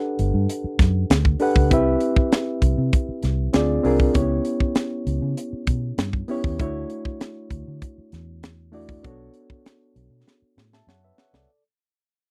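A lush, silky 1970s-style soul groove with a bittersweet mood, where a reedy, mellow electric piano carries rich chords such as Gmaj9 and Dmaj9 over a dark, round, foam-muted fingered bass and a tight funk drum kit with a high-tuned snare, all up front in a dry, close studio sound as the music fades out and a drum fill arrives at 10.3 seconds.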